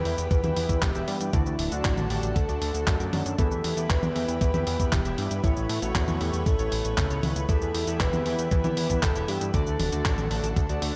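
Italo disco at 117 BPM in E dorian, danceable and bittersweet, this short excerpt sets a round, dark octave-layered synth lead with vibrato, chorus and delay over a lush, detuned unison pad, glossy retro polysynth stabs in the background, a fat, wave-folded analog bass with tube saturation, a thumpy sampler-style kick, and a clean 12-bit drum machine of cabasa, handclaps, hi-hat and toms bathed in gated reverb, all moving through Em, D and Aadd9 in light digital ambience.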